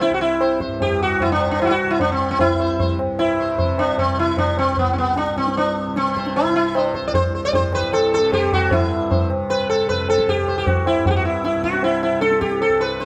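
Up front, a mellow, buzzing sitar carries a devotional, meditative Hindustani melody in raga Yaman on C, its sympathetic strings shimmering over a softly plucked tanpura drone and a close, dry, high-tuned tabla, all three playing together throughout this 13.1-second excerpt at 152 BPM in a moderate stone-room reverb, the tempo steadily speeding up from start to finish as the piece moves into a new section at 8.7 seconds.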